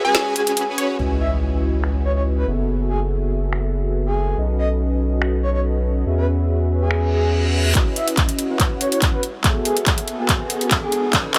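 This emotional, lush future bass passage opens on a brief break, where a breathy, flute-like synth lead carries the melody over a soft supersaw riff and a background unison pluck playing detuned arpeggios that stop at 1.0 seconds, all riding a half-time feel. At 1.0 seconds an impact lands and a deep, saturated sine sub bass enters up front, pumping with the sidechain beneath chords that move from C#m11 through F#m11 and B9 to E69. The trap kit sits up front with a woody snare, metallic hats, finger snaps and handclaps, its hats, snare and cymbals rounded by low-pass filtering and a tape-like glow. The lead's vibrato and chorus give it a gentle, floating sustain, while dub echo trails behind both the lead and the pluck. After a reverse cymbal, a punchy, layered electronic kick arrives at 7.8 seconds as the sub bass drops out, a drum fill and a filter sweep on the mellow, detuned supersaw drive a build-up, and a very quiet riser carries on under light reverb until the cut.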